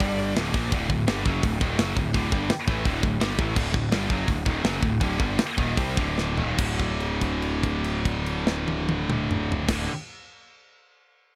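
Aggressive and dark, this heavy metal excerpt in 4/4 drives at 143-169 BPM with a bright, scooped, double-tracked high-gain guitar riffing up front over a growly fuzz bass and a tight studio drum kit with bright cymbals and a tight kick, slowing down from 3.6 seconds into a drum fill at 6.2 seconds before a held note rings out from 6.6 seconds in a dry sound.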